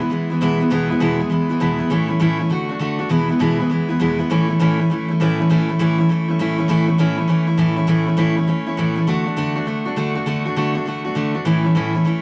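A swung eighth-note feel drives this brisk 4/4 rock excerpt at 201 BPM in A major, giving it a rollicking, retro bounce. A lone picked steel-string acoustic guitar carries the whole piece from 0.0 to 12.2 s, ranging from E2 up to F#4. Its jumbo body sounds full and fresh-stringed, sitting up front with audible finger squeak. A wet club reverb and a layer of vinyl crackle lend the recording an old-record, small-room character. The chords move from E through A and D back to E in the opening phrase, then settle on A at 4.3 s before shifting to D at 9.1 s and returning home to A at 11.5 s, as the piece cuts away from a longer performance.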